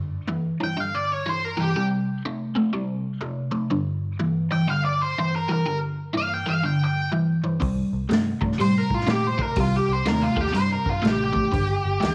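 An up-front octave-fuzz lead guitar carries a dark, distorted melody from 0.6 seconds over a bright, double-tracked overdriven rhythm guitar whose phaser-tinged riff moves between G5 and C5 power chords in G minor. This brooding, heavy blues rock and southern rock power-trio excerpt swings at 123 BPM in 4/4, slightly flat of standard pitch. At 7.6 seconds a round, foam-muted picked bass and a muffled, lo-fi vintage drum kit with tight kick, snare and hi-hat join, all set in light studio reverb.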